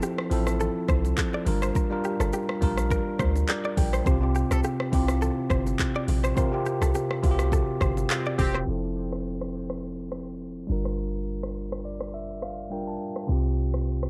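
Recorded at home onto cassette, this breezy, joyful afrobeats excerpt has a muffled, low-passed sound set in a digital ambience. Up front, a bright, bell-like tine electric piano plays clean chords that move through Fmaj7, Gm7 and Csus4 and adds short fills of its own. An electronic afro-pop drum kit pairs a deep kick and metallic hi-hats with handclaps, rim clicks and shaker, while very quiet bongos and congas sound close and dry under hard hands. A boomy, dark 808-style bass with a fast attack and decaying notes enters at 0.3 seconds. A twangy, compressed clean electric guitar, recorded direct and treated with tape echo, picks a riff until 8.6 seconds. During a band accent, a smooth horn section with light vibrato appears briefly in the background, just before the second section begins at 8.7 seconds.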